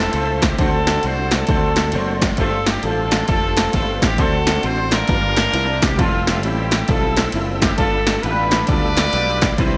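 An uptempo, hopeful and reverent gospel fragment at 133 BPM in swung 4/4 opens with a warm, distant, roomy horn section carrying the melody up front, over very quiet reedy tonewheel organ chords with key click and fast rotary, a direct, punchy fingered electric bass, and an intimate grand piano with audible action noise and ensemble chorus in the background, joined by an up-front analog drum machine of kick, snare and ride with gated reverb, as the harmony moves through Fmaj7, D7 and G9sus4 in a bright 1980s-style digital production with light reverb.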